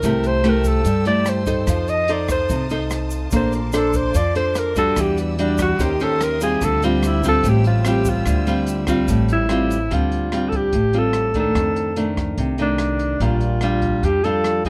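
This smooth, melancholic bossa nova excerpt in D minor opens at 146 BPM with a mellow, subtoned alto saxophone soloing up front with vintage vibrato over fingerpicked nylon-string guitar with a woody, old-strings character. Pizzicato upright bass, a dark, small-room jazz kit with a boomy kick, hi-hat and rim click, and a grainy egg shaker sit underneath, while a lush bowed string section holds soft-attack chords in the background. The strings and shaker drop out at 9.9 seconds as the harmony settles onto Dm7, F6 and Bb6 under light reverb.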